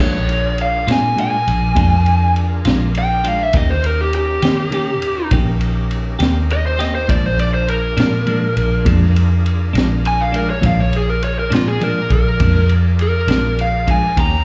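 This is a rollicking, laid-back slow blues in Bb at 68 BPM in 12/8 with a straight feel, cut from a longer piece. It opens straight into a solo from a lead guitar through a small cranked amp, dark and overdriven, sitting up front with plate reverb and slapback echo. Beneath it, a clean, compressed electric guitar comps with harmonic tremolo and its own slapback. A thick, gritty tonewheel organ holds sustained chords through a slow rotary speaker and chorus vibrato, and a round, foam-muted vintage bass plays punchy and forward. The drums come in at 0.3 seconds with kick, ride and a high-tuned snare, their rolled-off top and dim cymbals also touched with slapback. The harmony moves from Bb7 to Eb7 at 3.5 seconds and back to Bb7 at 7.1 seconds, all heard as a live gig through the venue's PA with club reverb.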